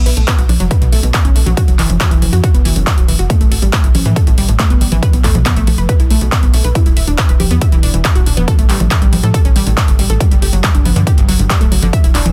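A punchy electronic kick anchors this emotional, soaring uplifting trance excerpt, backed by a layered drum kit of congas, handclaps and metallic hi-hats with a small-room character. Underneath, a tight, dark sequencer bass with tube saturation and sidechain pumping drives the music, while a lush, detuned unison pluck plays arpeggios through dub echo and its own sidechain pumping. The chords move from B5 through Esus2, A5 and E5 to G5, with a chordless stretch at 8.5 seconds, all in a dry, dense and heavily limited modern mix.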